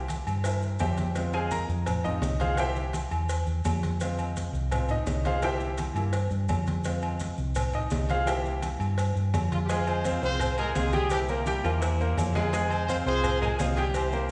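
Salsa at 169 BPM in F harmonic minor, this danceable, passionate cut from a longer piece moves between C7 and Fm over a dark, round, punchy hollow-body electric bass, with low-tuned, hard-handed congas and a tight, high-tuned cowbell in the background, ringing metal timbales and agogo bells, and grainy, close maracas. A bright, brilliant baby grand piano with audible action noise and short sustain takes a solo up front from the start until 9.7 seconds. At 9.5 seconds a punchy horn section with light vibrato enters with the melody, and the whole group sits in a reverberant recital hall.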